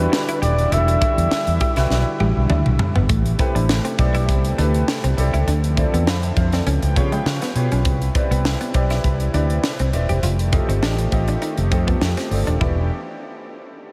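Urban and nocturnal, this polished 1980s jazz-funk pop excerpt opens with a breathy, whispered flugelhorn melody that ends at 2.5 s, while a clear concert grand piano with lush chorus and a slow-attack analog pad sit under it. A round, punchy fretless bass and a tight funk drum kit with a high-tuned snare drive the groove up front, with a drum fill from 1.9 s and a piano fill at 6.7 s, as a clean, hollow-body semi-hollow guitar riff glimmers in the background. The mix is dreamy and soaked in a huge ambient reverb, moving through rich seventh and extended chords.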